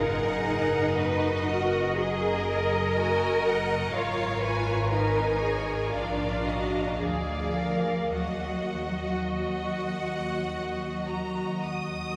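A slow, rubato romantic movement for string orchestra in Eb minor at 50-63 BPM opens with all five sections together, the distant, focused violins singing the melody over a clear, intense second violin line, lush viola accompaniment, a warm cello part that drops out at 11.6 s and a rich double bass foundation, all set in a serene, wet cathedral reverb with a 4.4 s decay.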